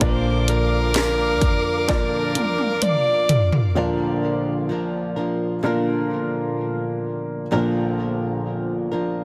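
Emotional and heartfelt, this slow 64 BPM pop ballad excerpt in straight 4/4 opens on a Bb chord with a clear, jazz-style alto saxophone melody with light vibrato, scooped notes and delay, over a mellow, woody upright piano, a lush bowed string section, a bright, boxy fingerpicked flamenco guitar with delay, a round, foam-muted electric bass and a punchy electronic house drum kit with a cracking snare whose fill begins at 1.9 s; by 3.7 s the saxophone, strings, bass and drums have dropped away, leaving piano and guitar alone until 9.2 s, framed by light reverb, small-room ambience and a dense, heavily limited modern master.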